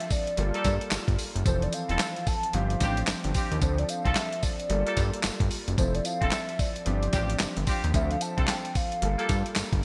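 Slick and punchy, this new jack swing R&B excerpt at 111 BPM swings its 16ths over a repeating Gm9, Fmaj7, G7sus4, Dm7 progression, with a gritty, thumpy sampler-style drum kit of kick, snare, hi-hat, handclaps and tambourine up front, a fat, detuned sawtooth analog bass joining at 0.4 s, a clear concert grand piano with analog chorus accompanying a hollow, woody clarinet-like synth lead with vibrato, and a mellow vintage horn section adding soft-edged stabs from 0.5 s, all set in bright 1980s-style digital production with light reverb.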